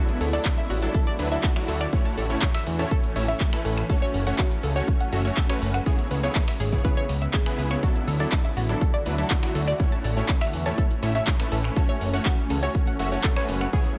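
Progressive house at 122 BPM, euphoric and expansive in this 14-second cut, where a punchy up-front electronic kick sits under a fat, detuned analog bass pumping beneath sidechained supersaw stabs, a round, nasal analog pluck arpeggio with phaser and delay, and a shimmering, ethereal pad in the background, while an overdriven deep house kit of finger snaps, handclaps and metallic hi-hats and a grainy tube shaker drive the Dadd9–A–F#m–C#m7 progression in a dry mix.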